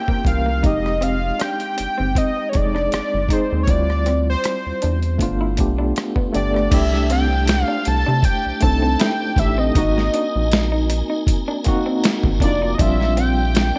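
A fat, nasal analog lead sits up front and carries the melody with vibrato and a touch of delay, giving this smooth R&B and neo-soul cut a warm glow at a relaxed 79 BPM in 4/4 with a gentle sixteenth-note swing. Beneath it, a worn, slightly out-of-tune tine electric piano supplies the chords with a medium tremolo. A dark, slightly broken-up electric guitar through a small old amp adds a lo-fi second line in the background, echoed by its own delay. A boom bap sampler-style drum kit, gritty and pitched down with a thumpy kick and high-tuned snare, pairs with a rubbery, bouncy square bass, both sitting up front. At 6.7 s a piping tonewheel organ enters quietly with sustained chords, key click, chorus vibrato and a fast rotary speaker, all framed by light reverb in this short piece cut from a longer track.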